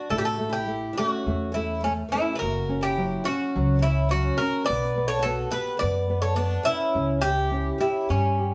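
The Irish bouzouki sits up front, its picked double strings ringing warm and metallic as it carries the melody in this passionate, longing fado-style ballad, which moves with a rubato feel in 4/4. Beneath it, a picked twelve-string acoustic guitar adds a second line with a shimmering, octave-doubled parlour sound, boxy and warm with fresh strings and the occasional finger squeak. A nylon-string guitar fingerpicks a dark, classical accompaniment, while the upright bass, entering at 0.1 seconds, plays pizzicato with a woody, thumpy tone that sits up front alongside the bouzouki. The harmony moves through A, F#, B5 and C#dim, and the band plays live together in one room, wrapped in a wet stone-room reverb. This short excerpt is cut from a longer piece and runs to 8.5 seconds.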